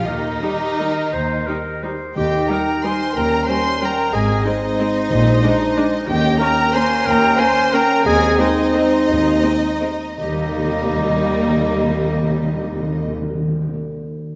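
A dark, woody violin section carries the melody of this festive, elegant orchestral ballroom waltz, its bowed vibrato singing high above the ensemble in a flexible, rubato three-beat lilt. Beneath it, a pure, hollow silver flute and a distant, roomy clarinet share the second line with a soft, sul tasto violin section in the background. A smooth, expressive viola section supplies accompaniment, while a tight, mellow French horn section holds sustained chords behind the strings. The low end pairs a very quiet, rich cello section with a lush double bass section whose bowing slides with portamento, and articulate calf-head timpani struck with hard mallets join in, dropping out from 2.6 to 5.1 seconds. The harmony moves from the home chord through seventh chords and back, the music slows between 7.6 and 10.2 seconds, and a generous scoring-stage reverb bathes the passage, which is cut from a longer piece.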